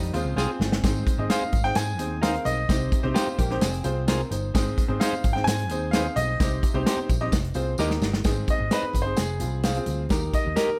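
A bright, brilliant grand piano carries the melody up front in this danceable slice of uptempo 1960s-style soul, entering at 1.3 seconds and taking a solo from 8.3 seconds to the close. Beneath it, a natural acoustic drum kit with a punchy kick and medium-tuned snare keeps a straight 4/4 groove, with short fills near the start and just before the solo, while a picked electric bass sounds amped and warm. A worn, woody upright piano, slightly detuned, fills out the accompaniment, and a dark, fingered clean electric guitar adds stabs. A compressed hollow-body jazz guitar plays a riff only in the opening 4.3 seconds. A jingly vintage tambourine sits in the background alongside very quiet, high-tuned congas played with soft hands, all set in a small-room ambience.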